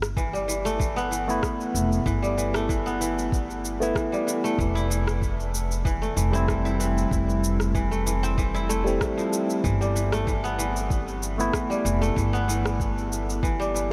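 Organic downtempo at 95 BPM in G mixolydian, earthy and peaceful, with a light 16th-note swing and chords moving from G69 to Fmaj7 at 4.6 seconds in this short cut from a longer piece. A woody, up-front pizzicato upright bass pumps against a soft, overdriven electronic kick, while an overdriven electronic rim click and cabasa ticks beneath, and a bright, ringing kora plays fingerpicked arpeggios through delay from 0.2 seconds. At 1.3 seconds a barky tine electric piano enters through a combo amp with phaser, delay and pumping, all set in a dreamy mix soaked in a huge ambient reverb.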